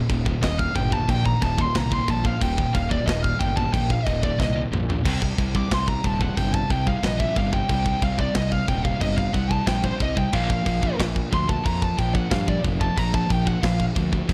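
A bright, high-gain distorted guitar and a very quiet, sludgy overdriven guitar open this dark, epic heavy metal excerpt with a riff at 91 BPM in straight 4/4, joined at once by a growly, fuzz-laden fingered bass and a tight, up-front drum kit with crash, kick, snare and toms, which plays a fill at 4.4 seconds. Over this, a high-gain lead guitar with a distorted, warm tone carries the melody from 0.4 seconds, soloing through the whole passage as the harmony moves from Eb to Bb at 10.3 seconds. The dark production sits in studio reverb.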